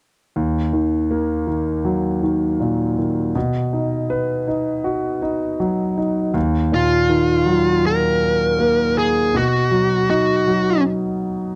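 A clear concert grand piano opens this heartbroken pop excerpt in a straight 4/4, its intimate, up-front sound carrying audible action noise and deep bass beneath a chord progression that shifts between Ebm, B and Ebmadd9. At 6.7 seconds a dark, compressed fuzz lead guitar takes the melody, its picked, distorted tone colored by slapback echo before it stops at 10.8 seconds. The recording has the dry, close feel of a 1970s studio with only light reverb, and the piano plays on until 11.6 seconds.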